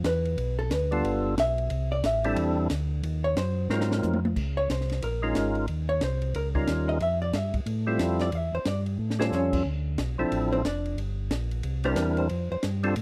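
A fast, swinging 4/4 groove drives this greasy, soulful soul jazz organ trio fragment, cut from a longer piece. A compact cocktail drum kit keeps it dry and acoustic, with dark cymbals, a high-tuned snare and a punchy kick, and it breaks into short fills at 3.7 and 9.0 seconds. Underneath, a smooth, clean tonewheel organ carries the bass line up front, colored by chorus vibrato and a slow rotary speaker. A dark, compressed hollow-body electric jazz guitar, clean and picked, comps and solos across the whole stretch. From 0.9 seconds a fat, lightly overdriven percussive tonewheel organ takes the melody with a bite of third-harmonic percussion, vibrato and slow rotary swirl, over jazzy changes rich in sevenths, ninths and altered chords, all captured in a close, intimate 1970s-style studio sound.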